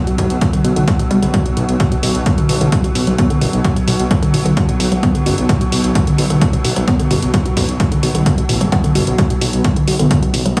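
A straight 130 BPM pulse drives this relentless, hypnotic slice of peak-time techno, with a punchy, tape-warm electronic kick up front and a dry analog hi-hat that pumps against it. Underneath, a thick, menacing detuned saw bass beats and saturates, while a swarming, ring-modulated drone with its own reverb hovers tense and evolving. Tucked in the background, a woody, wave-folded pluck riff carries chorus, cassette-tape colour and digital delay, and the whole groove sits in a lush hall reverb.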